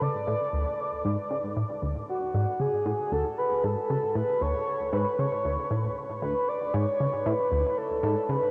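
A breathy, flute-like synth lead and a tight, sawtooth-edged sequenced synth riff open together at 0.0 s in this short cut from a longer piece of cosmic, luminous ambient space music in D Lydian, moving at 116 BPM in a straight 4/4 over a D5 chord. The lead's soft, vibrato-touched melody floats above the detuned, filter-plucked low riff, both up front and shaded with chorus and tape echo. A huge wet reverb with a 9.0-second tail and the warble of worn cassette tape, its pitch drifting, wrap the whole recording until the lead ends at 8.5 s.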